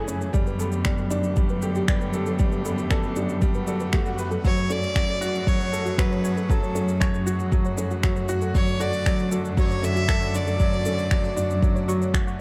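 A bright, open grand piano riff with delay, a warm string quartet holding sustained chords in the background and a rich, bowed cello section with sidechain pumping on the bass open this intimate, moving piano-and-strings electronica excerpt, joined by an up-front, deep electronic kick, electronic shaker and finger snaps, and a soft, round, chorused pluck playing arpeggios before a brief electronic swell at 3.6 seconds gives way to a close, airy-bowed violin melody from 4.5 seconds, all in a dark, small-room production.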